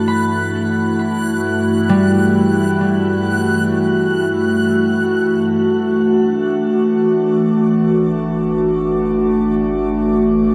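Soaked in a long, wet shimmer reverb and given a dark, warm production, this ambient fragment in G major drifts in free time with a weightless calm. Up front, a warbling, tape-like pad holds sustained chords with a nostalgic, lo-fi vintage tint, its detuned, wave-folded tone thickened by chorus. Alongside it, a concert harp rings out fingerpicked arpeggios through a delay before falling away at 5.6 seconds. High above both, a reversed, granular texture hangs with a bright, dreamy glow. The harmony rests on Gmaj7 and then opens into a sparer voicing of that chord at 5.5 seconds, and a deep, ominous drone with a nasal, ring-modulated rumble enters underneath at 7.8 seconds.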